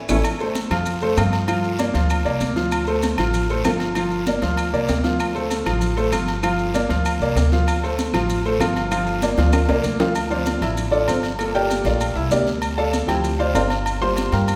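Passionate and driving, this salsa excerpt moves at 194 BPM in straight 4/4, set in D minor with its tuning a touch under standard pitch. A clear, polished upright piano sits up front as accompaniment, its intimate tone carrying audible action noise and long sustain, while a dark, thumpy pizzicato upright bass on gut strings holds the low end just as close. The percussion layers ringing metal-shell timbales and agogo bells, heard close and dry, over bright, high-tuned congas with damped, thin skins, plus a raspy guiro and grainy, mellow maracas tucked into the background. Very quiet woody claves tick along until 9.7 seconds, and a drum fill opens with a band accent before another fill leads into the piano's solo turn at 10.2 seconds. The harmony circles between Gm7 and Dm7 after an opening Fadd9, and a wet reverb gives the whole mix the spacious bloom of a church or concert hall.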